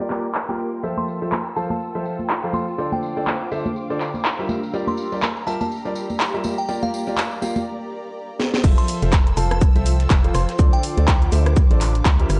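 A dry, gritty cassette-tape sound with light digital ambience frames this uplifting piano house excerpt at 123 BPM in F major, where a clear, boxy grand piano riff, a cloudy granular pad and a smooth symphonic violin section in the background all pump under sidechain, while overdriven house drums with cracking snare and handclaps, hand-played tambourine and congas, and a glassy, warbling synth bell melody with chorus and tape echo ride a filter sweep. After a short break and a drum fill, the drop at 8.6 seconds brings in a punchy, up-front electronic kick, a hollow, organ-like FM bass and a very quiet electronic shaker and snare, cycling through Fmaj7 and Dm7 with a swung, feel-good bounce.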